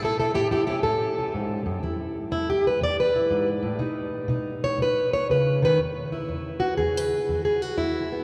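Swinging eighth notes at 121 BPM in 4/4 give this short cut from a longer acoustic country blues piece a loose, strutting gait in E major, tuned slightly flat at A4 = 439 Hz. A lone fingerpicked steel-string acoustic guitar, plugged in and placed up front, carries everything across its 8.2 seconds, ranging from E2 up to D5. Its tone is boxy and parlour-sized, with the bright snap of fresh strings and a warm body, lending the playing a soulful, swaggering character. The guitar solos through the opening section over chords moving from A to E to B, then settles back onto E at 5.8 seconds as a second section begins. A wet cathedral reverb with a long 6.2-second decay surrounds the guitar, setting it in a vast, echoing space.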